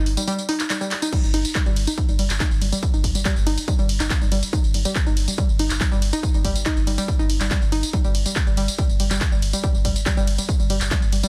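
Hypnotic and dark, this driving peak-time techno excerpt at 141 BPM opens on a thick, saturated sub bass pumping low in the background, joined by a punchy analog drum machine with crash, ride, handclaps, hi-hat and tambourine, a warbly, dusty, lo-fi pluck riff between G3 and Eb4 carrying chorus and digital delay, and a heavy, tape-toned electronic kick that enters at 1.1 seconds after a drum fill at 0.9 seconds, all set in light digital ambience within a dense, heavily limited modern master.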